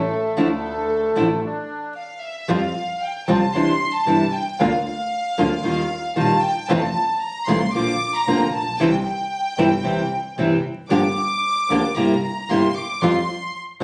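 A tense, sultry tango in F major opens with a reedy, vintage bandoneon carrying the melody up front alongside an intimate violin section and a focused, bowed double bass, with a bright, fingerpicked nylon-string guitar joining at 0.4 seconds. The pulse sits at 114 BPM in 4/4 but is played rubato, and the bandoneon's band-limited voice drops out at 1.9 seconds, in the middle of a stop in the music. From 2.5 seconds the violin section takes a featured solo, its sul tasto bowing and light vibrato sounding close and warm, while the guitar's fresh strings and the bass's clear, smooth vibrato continue underneath. The harmony drifts through suspended and added-ninth colours such as Fsus2, Cadd9 and Ebadd9 before settling through Gm7 and C7/G onto a bare F5. The whole piece, an extract from a longer work, is heard as if captured on a phone in a club, with a short, reverberant room, added studio reverb, vinyl crackle and compression giving it a worn, smoky character.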